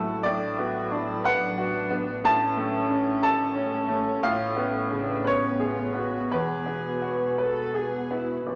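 In a 6/8 that breathes with rubato, at roughly 55-61 BPM counted in dotted quarters, this short neoclassical passage for piano and strings is cut from a longer piece and carries a hopeful, tender mood. A bright, woody upright piano sits up front as the accompaniment, its open, short-sustained notes ranging from A1 to A5. Alongside it, a single bowed cello plays a second line sul tasto with soft attack and light vibrato, sounding intimate and close. A glassy FM pad holds sustained chords with slow attack and long release, its ethereal, full-bodied tone colored by ensemble chorus, phaser and its own reverb. A dark double bass, bowed sul tasto by one player with an airy, smooth top, anchors the low end, and all four parts play throughout, moving from Bm/A through A and C#7/A to Eadd9 inside a large studio reverb of about 1.2 seconds.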